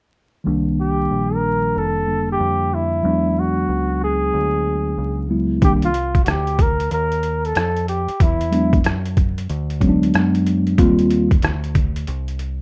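A breathy flugelhorn with light vibrato, scooped notes and a slapback echo carries the melody from 0.8 to 8.9 seconds over a mellow tine electric piano, a deep, round dub bass and, from 5.6 seconds, a gritty, pitched-down sampler-style kit of thumpy kick, hi-hat and rim click, giving this mellow, nocturnal jazz-hop excerpt at 93 BPM a swung feel, light reverb and a rough home-demo sound dusted with vinyl crackle as the chords move from Cm9 to E9 and settle on Eb69.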